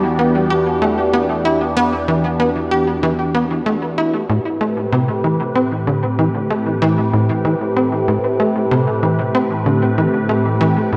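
A swirling, phased analog pad holding sustained chords and a tight, punchy sequencer bass riff, nasal and driving with filter plucks, vintage 12-bit grit and analog delay, open this hypnotic, cosmic space-music excerpt at 95 BPM, over a mellow, warbling drone on E2 that stops at 4.3 seconds as the harmony moves from Em7 to Am7. At 6.0 seconds a very quiet, breathy, wind-like tuned noise texture enters high on G5. The echo-heavy mix sits in a wet chamber reverb with a 2.3-second tail.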